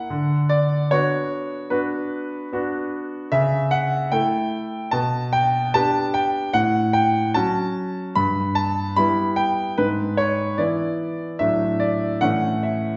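Heard from further back in a wet recital hall with its top end rolled off, this elegant, graceful classical-period piano sonatina cut from a longer piece unfolds at 74 BPM in 4/4 with a rubato feel, as a solo concert grand piano with a clear, natural tone and deep bass spans G2 to B5 across 13 seconds, moving through chords from Bm/D and A/C# to E7/G#, D/A and a closing A.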